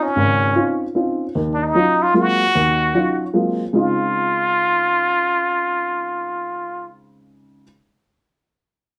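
This jazz waltz, cut from a longer piece, moves at 151 BPM in 3/4 with a swung eighth-note feel in Db major, and its mood is relaxed and playful. A plunger-muted trumpet carries the solo melody up front, its wah-wah tone brilliant yet punchy and forceful, shaded with vibrato in a classic jazz style. Beneath it, a dark upright piano accompanies with a mellow, woody, somewhat boxy sound, intimate enough that its action noise can be heard. The harmony opens on Dbmaj9, passes through Ebm9 and Ab13, and comes back to Dbmaj9. The trumpet drops out at 6.9 seconds, and the piano carries on alone until 7.6 seconds. A wet studio reverb places the pair a little further back in the room.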